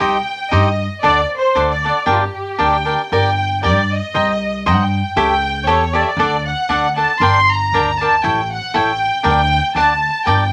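Mariachi-style Mexican folk in G minor at 117 BPM in a swung 2/4, this dramatic, passionate excerpt sets a clear, focused violin section with vibrato up front on the bowed melody over a bright, crisp picked cavaquinho and a dark, woody pizzicato upright bass, turning to G harmonic minor at 3.1 s within moderate studio reverb.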